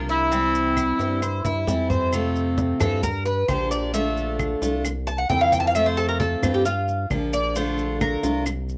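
A lo-fi home cassette recording with light reverb and a small-room feel carries this sunny latin excerpt of Cuban son and guajira, moving at 133 BPM in F major. A vintage, jazz-style trumpet with light vibrato and scooped notes opens with a brief lead from 0.1 to 1.6 seconds, over a boxy steel-string acoustic guitar with finger squeak, a rubbery, nasal synth bass up front, grainy maracas, thick-skinned low-tuned congas and woody claves in the background. At 2.1 seconds the bright, metallic Cuban tres takes a solo of picked arpeggios on its doubled strings over a cycling Fmaj7, Gm7, Bbmaj7 and C7 progression.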